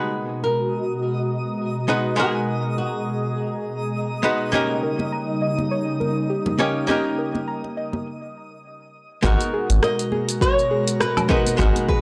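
Wistful and warm, this sunset chillout excerpt opens with a fingerpicked flamenco guitar melody carrying tape echo over a dark, clean archtop guitar and an airy, breathy pad with chorus and sampler grit, as a twinkling granular texture sparkles above; a soft round pluck plays arpeggios and ringing congas join at 4.5 seconds, and after a short break a nasal, tube-saturated analog bass, a deep house drum kit of hi-hat, rim click, shaker and woodblock, and a layered electronic kick arrive at 9.2 seconds as the flamenco guitar returns, with the recording itself dry and gritty like cassette tape under light digital ambience.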